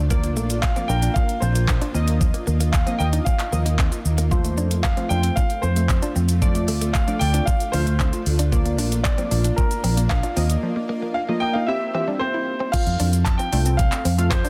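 A round, foam-muted electric bass pumps up front against a knocking electronic drum kit with metallic hats, handclaps and shaker in this summery, carefree dance-pop excerpt, while a polished grand piano carries the melody with delay from 0.6 s. Detuned, pumping analog keys with a filter sweep and a bouncy, very quiet square-wave pluck fill in chords and arpeggios, as a clean, bright direct guitar riff and a shimmering, ethereal pad sit in the background, the pad dropping out at 12.7 s. A barely audible group handclap, crisp and dry, joins at 13.3 s in a dense, heavily limited mix.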